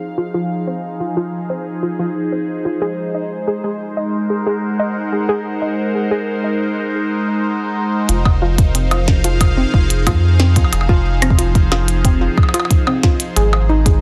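A dense, heavily limited modern master with light reverb frames this short, intricate and glitchy IDM cut from a longer piece, in straight four. A swirling, up-front phased analog pad holds sustained chords, its detuned sawtooth tone thickened by phaser, chorus and the grit of a vintage 12-bit sampler. Alongside it, a warbling, lo-fi dusty pluck spins arpeggios through chorus and dub echo, and both pad and pluck carry a filter sweep through the opening stretch over shifting minor-seventh and dominant-seventh harmony. At 8.1 seconds a deep, round analog bass arrives up front alongside a glitchy electronic kit of tiny snare, clicky hats and percussion blips, set in a small room with tape echo. A soft electronic kick joins at 8.3 seconds, grounding the busy texture until the fragment ends.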